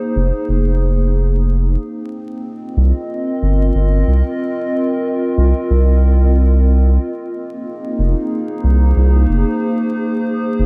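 Vinyl crackle sits over a dry, close sound in this spacious, deep ambient dub fragment at 92 BPM in F minor, cut from a longer piece. A warbling, detuned, nostalgic pad carries sustained chords with a slow attack and long release, softened by chorus and its own reverb, moving from Fm to Cm7 at 1.8 seconds and back to Fm at 7.0 seconds. Beneath it, a round analog bass entering at 0.2 seconds holds the low register with a dark, sine-like tone and a fast attack, sitting up front in the mix.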